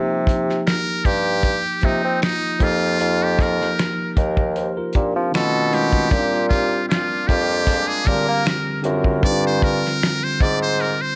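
Introspective and soulful, this swung neo-soul R&B excerpt sets a muted trumpet solo, buzzy and scooped with vibrato, over a clean tine electric piano and a clear bassoon carrying the bass line with light vibrato, while a fat-snared soul drum kit with finger snaps sits up front, a background saxophone section adds brief stabs from 6.3 to 8.4 seconds, and analog delay on the trumpet, piano and saxes feeds an echo-heavy small-room mix.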